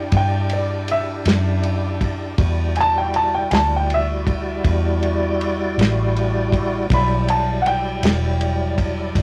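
A smoky, brooding slow blues in E minor opens with an upright piano taking the solo in a high register, its tone woody, polished and present with short sustain. Beneath it, a tonewheel organ holds full, lightly overdriven chords with chorus vibrato, audible key click and a slow rotary speaker, while a muted fingered electric bass sits up front with a round, punchy, amped sound. A soul drum kit enters at 0.1 seconds with a tight kick, a medium-tuned snare and dark ride cymbal, its dry, muffled tone rolled off at the top. At 53 beats per minute in 12/8, the straight feel settles into an unhurried pace over a single Em9 chord. The rough rehearsal-room recording carries tube saturation and a moderate studio ambience, and this brief cut from a longer piece lasts about 9.2 seconds.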